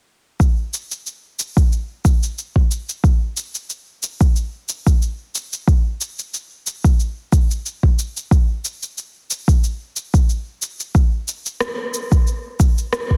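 Organic downtempo at 91 BPM in 4/4, with a light swing on the sixteenths and an earthy, warm mood, heard here as an excerpt cut from a longer piece. A deep, up-front electronic kick drum anchors the groove from 0.4 to 13.2 seconds, alongside an electronic cabasa and rim click whose snare carries soft clipping, both parts tape-toned and re-recorded in a large room. The sound is dry, with a dense, heavily limited modern master.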